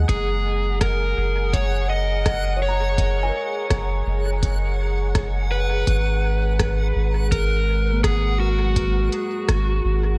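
The recording sounds close and dry overall, a short, peaceful and hazy stretch of ambient dub cut from a longer piece, moving at 83 BPM in a straight 4/4 in F# major, with the tuning set to A4 = 438 Hz. A soft, round triangle-and-square sub bass sits up front on the low F# and G#, while a deep, moody pad of detuned sawtooth and sine layers holds sustained chords through chorus and its own reverb, its slow attack and long release adding a ring-modulated, wave-folded shimmer. A woody, hollow kalimba plays mellow arpeggios in the background, its vintage, band-limited plucks trailing dub echo, and a reversed, granular texture swells on a high F# with a bright, dreamy glow. From 0.1 seconds an overdriven electric slide guitar carries the melody up front, dark and fingerpicked, with dub echo trailing its lines. Underneath, a muffled, pitched-down, thumpy kick with overdrive rests in the background beside an electronic kit of smooth hats and rim clicks touched with studio reverb and echo. 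The harmony moves from F#add9 to G#m7 at 5.9 seconds, and the drums drop away at 9.6 seconds.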